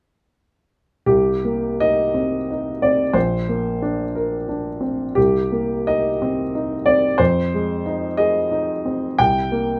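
Neoclassical minimalist piano in C minor, this wistful, melancholic fragment of a longer piece moves at 60 BPM in a rubato 6/8. A solo grand piano plays from 1.1 to 9.8 seconds, ranging from Bb1 up to G5. Its tone is warm, smooth and vintage, with a short sustain, and it sits up front in a moderate studio ambience. The harmony moves from Cm7 to Bbadd9, back to Cm7, then to Fm7. It arrives at a C7 chord with its third omitted at 9.2 seconds.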